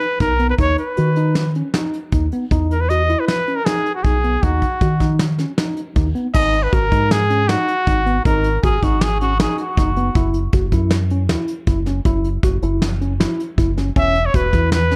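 A dark, warm production with light studio reverb frames this cut from a longer progressive instrumental, a bright, driving band piece in 5/4 at 157 BPM with a straight feel. A clear trumpet with a smooth top carries the melody up front in a classical style, dropping out at 8.6 seconds and returning near the close at 14.0 seconds. A worn, slightly out-of-tune electric piano runs arpeggios throughout, lightly overdriven and heard through its built-in speakers. Driving the groove, a soft brush kit with a fat snare and punchy kick sits up front beside a round, direct fingered electric bass. In the trumpet's gap, a trombone with a metal mute takes a brief solo line that is buzzy, thin and brilliant, also in a classical style. The harmony moves from B/D# and Emaj7 to G#7(no3), F#5 and E5.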